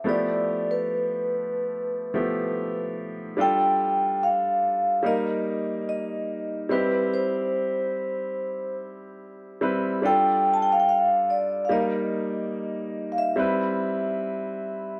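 A straight, unhurried 4/4 pulse carries this lush soul fragment, cut from a longer piece. A vibraphone played with soft mallets sings the melody throughout, its metallic, ringing tone mellow and airy, shimmering with a medium motor vibrato. Beneath it, a clear grand piano supplies the accompaniment with a natural, up-front sound, sitting a little lower in the mix than the vibraphone. The harmony opens on a G13 before the second section arrives at 3.4 seconds, cycling through F69, Eb and Cmaj7 and then repeating that progression. A moderate echo-chamber reverb gives the whole a soft, enveloping glow.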